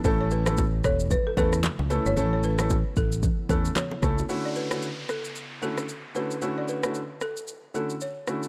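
A joyful, romantic afrobeats groove in D major opens with an electronic drum kit of deep kick, handclaps, rim click and shaker, joined by a round, punchy fingered electric bass, an intimate grand piano with audible action noise, and bright, close congas and bongos sitting in the background at 113 BPM with a swung sixteenth feel. A very quiet, ethereal pad holds dark, detuned sustained chords underneath, its slow attack, chorus and tremolo adding a hazy shimmer. On top, a rustic folk marimba with medium mallets carries the melody, while a buzzing, close-miked balafon plays a riff through an analog delay. At 4.3 seconds the music drops into a break on a Dmaj7 chord: the bass, pad and hand percussion fall away, leaving piano, drums and balafon as an electronic downlifter sweeps in. The whole cut, taken from a longer piece, has a dry, gritty feel in a small room.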